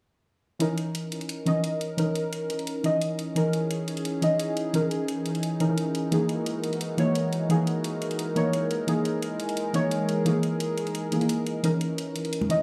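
Dreamy and melancholic, this excerpt of liquid drum and bass at 174 BPM in C# dorian sets a deep, warbling chord stab with chorus and tape echo over a smooth, detuned analog pad moving from C#m69 to F#13 and back, while overdriven electronic hi-hats sparkle in a light studio reverb and bright, dry congas appear only briefly at 12.4 seconds.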